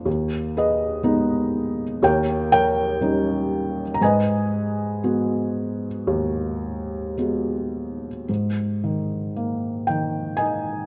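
Wistful and melancholic, this short classical excerpt features a felt-muted upright piano playing solo with lyrical rubato in 4/4, its soft, mellow, intimate tone sitting up front with audible action noise inside a moderate concert hall reverb, moving from G#m/D# through D#7 and G#m7 before shifting to Absus2 at 8.3 seconds.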